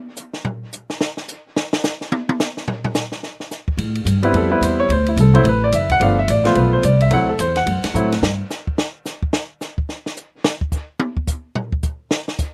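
A dry, close, open-air sound with lossy compression artefacts frames this fragment of a swinging jazz piano trio at 216 BPM in 4/4, with a warm mood. A compact cocktail drum kit with dark cymbals, a high-tuned snare and a punchy kick plays alone at first. At 3.8 s a woody pizzicato upright bass enters, and a clear, present grand piano joins just after over Am7, D9, G9 and D9 before the drums take another solo from 8.2 s to the end at 12.5 s.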